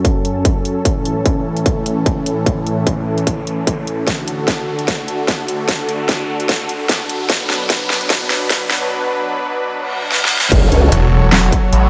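Set in light reverb and a digital ambience, this aggressive, heavy wobble dubstep clip at 149 BPM in F# minor rides a half-time, swung feel as a lush, detuned supersaw pad holds sustained chords through a filter sweep and sidechain pumping, while a distorted electronic kick and an overdriven dubstep kit with a huge snare, handclaps, hi-hat and crash build with drum fills. A riser, reverse cymbal and impact sit in the background, pushing the build-up toward the drop at 10.5 seconds. There a saturated formant-sweep wobble bass with chorus lands up front, then a snarling, growling sawtooth bass takes over at 10.9 seconds with a moving notch and distortion.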